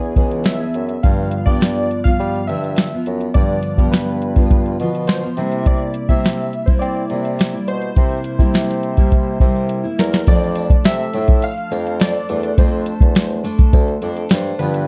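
A sunny, laid-back slice of indie bedroom pop in F major at 104 BPM opens with round, detuned sawtooth keys carrying the melody through subtle chorus and tape echo, over a full-bodied picked steel-string acoustic guitar with finger squeak and warbly pitch drift, and a clear bassoon playing the bass line with light vibrato in a classical style. A dry, overdriven vintage rhythm box sits up front with a deep kick, crisp snare and metallic hats, and a fill at 9.7 seconds leads into a new section at 10.3 seconds, where a jingly tambourine joins quietly in the background. The production is dark and warm with light reverb, moving through E7, G7 and C7 before settling on F6.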